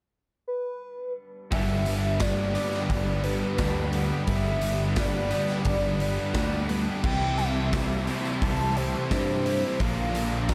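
A soft, round sine lead with chorus, phaser and tape echo opens this hazy, blissful shoegaze and dream pop excerpt on its own at 0.5 seconds; at 1.5 seconds a big rock drum kit with a punchy kick and bright cymbals enters alongside a growling overdriven bass, a dark fuzz guitar, a crunchy overdriven guitar with reverse reverb, a tight double-tracked distorted guitar and a very quiet, silky string pad, joined soon by a faint jingly tambourine and, from 2.6 seconds, twangy twelve-string arpeggios.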